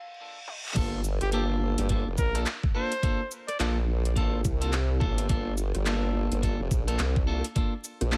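A saturated, formant-filtered wobble bass sits up front in this funky, swaggering glitch hop excerpt, dropping in at 0.8 seconds after a reverse cymbal and a drum fill from the dubstep kit with its huge snare and metallic hats. A knocking electronic kick, pumping clean electric guitar stabs with delay, and the kit's claps, shaker, rim clicks and toms ride a swung groove over a single Gm9 chord. A clear, close-miked jazz trumpet with light vibrato and gritty 12-bit sampler texture plays a short solo melody from 1.2 to 3.7 seconds, all set against a backdrop of vinyl crackle.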